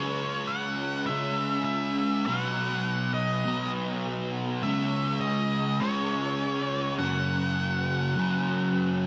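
Rock in C# minor at 102 BPM in a straight 4/4, this hazy, dreamy passage is cut from a longer piece and tuned slightly sharp to A4 = 444 Hz. A double-tracked fuzz guitar carries the riff from 0.0 to 9.1 seconds, sitting up front with a compressed, warm, distorted tone thickened by ensemble chorus across its low-to-middle range. Above it, an octave-fuzz lead guitar plays the melody in a narrow high register from C#5 to F#5, its dark, picked sound trailed by a diffuse ambient delay. The chords move from C#m to B, back to C#m, and settle on an F#5 power chord near 7.0 seconds. A wet plate reverb with a 2.6-second decay soaks the mix, giving the short passage its drifting, dreamlike haze.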